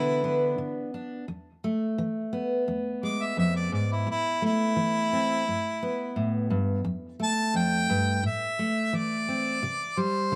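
Acoustic folk for a duo or small band, this short excerpt moves at 86 BPM in a straight 4/4 in A minor, with an intimate, haunting mood. A warm harmonica carries the melody as a solo throughout all 10.4 seconds, its tone touched with light vibrato and a slapback echo, and it has a distant, roomy quality despite sitting up front. Beneath it, a fingerpicked steel-string dreadnought guitar provides full-bodied accompaniment in its lower register, also placed up front. The harmony moves through Bmadd11, Esus4 and E before settling into Am, G, Fadd9, Am and finally Csus2, lending a wistful, unresolved color to the phrase. Recorded outdoors with light reverb, the sound feels open and close at once, and the harmonica's classical-style phrasing stands out as the focal point.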